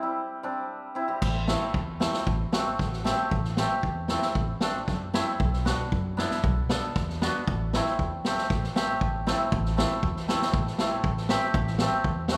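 A straight four-beat pulse that keeps speeding up drives this bittersweet, festive klezmer excerpt, which opens with a shimmering, ringing hammered dulcimer alone over a C chord before a woody, growly pizzicato upright bass and a vintage drum kit with a punchy kick and dark cymbals enter at 1.2 s, moving through Am and Bm inside the moderate reverb of a church or concert hall.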